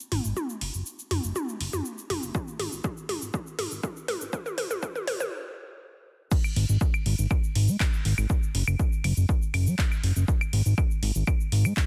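A fat, saturated analog bass with a wave-folded sawtooth edge and sidechain pumping dominates this dark, melancholic melodic techno fragment, sitting up front from 0.1 seconds. A layered techno drum kit with metallic hats, claves, handclaps, shaker and toms drives a build-up with a fill until a stop at 5.3 seconds. A punchy electronic kick, present from 2.3 seconds, anchors the drop at 6.3 seconds, all within light digital ambience and a dense, heavily limited modern master.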